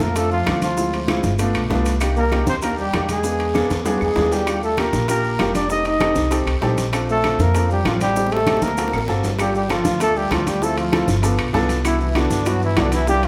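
Sunny and sophisticated, this Afro-Cuban jazz excerpt moves at a brisk 195 BPM in Bb major, with a dark, breathy trumpet carrying the melody in a whispered, intimate voice while a growling, gritty trombone plays a second line and a clear grand piano, its action noise audible, supplies the harmony through rich chords such as Ebmaj7 and Cmaj9#11. An up-front, woody pizzicato upright bass anchors the band. It is joined by soft-handed congas, ringing metal-shell timbales and raspy guiro in the background, along with grainy maracas, while tight high-tuned bongos and saturated claves are barely audible. Drum fills at 3.5 and 8.2 seconds punctuate the phrases before the harmony shifts at 9.4 seconds, all set in the moderate reverb of a large studio where the group plays live together.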